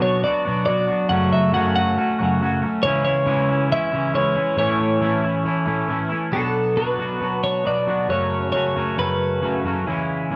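A clean, twangy electric guitar riff, double-tracked and up front, opens this restless, bittersweet rock excerpt alongside a bright, compressed twelve-string electric guitar carrying the melody in an upper register. At 137 BPM in a straight 4/4 and B dorian, the chords move from Bm through F#m and C#m to A, with a new passage starting at 6.3 s that returns to Bm. The twelve-string stops at 9.6 s while the picked riff carries on to 10.4 s, all set in moderate studio reverb with a dark production.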